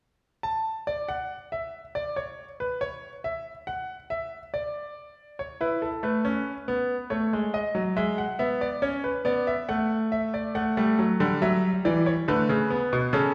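The recording places a bright grand piano in a wet recital hall, heard from further back in the room, and its reverb lingers for about 1.5 seconds around each note. This is a short excerpt from a longer classical piece, a baroque-style three-part fugue in D major at 70 BPM in 3/4, with a straight, elegant and lively character. The solo piano plays from 0.4 to 13.3 seconds, spanning B2 to A5, and its tone is brilliant and intimate with long sustain and audible action noise. It opens with the lines unaccompanied by harmony before the chords arrive, moving from A through F#m69 and E/G# to A5, D, and finally Bm9. Despite the distant placement in the hall, the instrument itself sounds present and up front.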